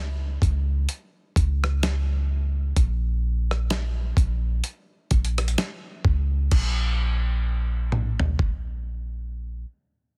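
A deep, boomy 808-style bass sits up front from the start, its clean, sine-like tone hitting with a fast attack and decaying darkly around Bb1 to Db2 in this sensual, late-night contemporary R&B excerpt in Bb minor at a slow 64 BPM with a swung sixteenth-note feel. At 0.4 seconds a gritty, tape-tinged sampler-style drum kit joins with a thumpy kick, medium-tuned snare, rim clicks, hi-hat, toms and crash, compressed and close in the mix until it drops out at 8.6 seconds, leaving the bass alone until it stops at 9.6 seconds. The sound is dry and dense, with a heavily limited modern master, and the music moves into a new section at 6.5 seconds.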